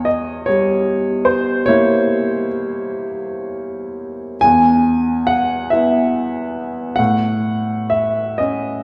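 Serene and dreamy, this short cut from a longer romantic nocturne for solo piano drifts at a slow 39-50 BPM in dotted quarters, its 12/8 metre loosened by generous rubato. The grand piano carries everything alone from 0.0 to 8.8 s, ranging from E2 up to G#5 and tuned slightly low to A4 = 438 Hz. Its tone is clear and intimate, sitting up front and present, with the mechanical noise of the action audible beneath long, lingering sustain. The harmony opens on a hovering Edim7, settles onto E at 4.4 s, and then shifts to F#m/A near the close. A wet recital hall reverb, with a decay of about 1.5 seconds, wraps the instrument in the resonant air of a church or concert hall.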